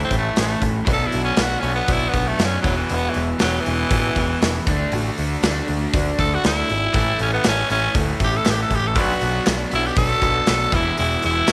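A raspy, gritty tenor saxophone solos up front from the start of this sunny, swaggering classic rock excerpt, its vibrato-laced pop-style lead riding over a straight four-beat groove, while a bright, double-tracked overdriven electric guitar riff and a warm picked steel-string acoustic guitar sit in the background. A growling, punchy overdriven electric bass and a big acoustic rock kit with a punchy kick, medium-tuned snare and hi-hat drive the chord changes, the drums up front in a studio room. Very quiet, crisp group handclaps join at 7.4 seconds, and the whole mix sits in light, small-room reverb.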